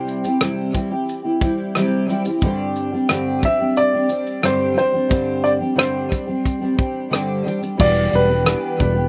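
A woody, intimate upright piano carries the melody in this sunny, carefree acoustic pop excerpt at 89 BPM in 4/4, its action noise audible and a slapback echo trailing its notes. A dark, full-bodied, double-tracked fingerpicked steel-string guitar sits up front with audible finger squeak, while a natural country drum kit adds a punchy kick, rim click, shaker and crash cymbal over chords moving from C to Gsus4. A bright, foam-muted fingered electric bass enters at 7.8 s as the harmony turns to Em7, all in a dry, open-air sound cut from a longer piece.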